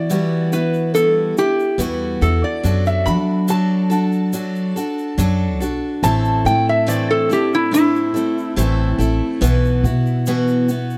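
Reflective and haunting, this slow 71 BPM acoustic folk piece in E minor is led by an up-front, metallic, nasal resonator slide guitar played with a steel bar and fingerpicks until 10.2 seconds, over a bright, freshly strung picked steel-string acoustic guitar, a woody, thumpy pizzicato upright bass and a grainy egg shaker in the background, moving through Emadd9, D/F#, Am and Bsus4 in a dry, close 1970s-style small-room recording.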